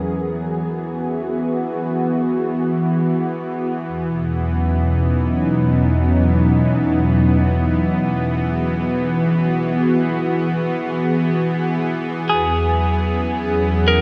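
Peaceful ambient excerpt in which a smooth, detuned sawtooth analog pad with chorus holds soft-edged chords that move from F#7/E to B69/E, alongside a tense, bright, string-like drone with vibrato and its own reverb, before a clean, picked electric guitar with tape echo and shimmer reverb enters at 12.3 s with arpeggios, within a vast, echoing space.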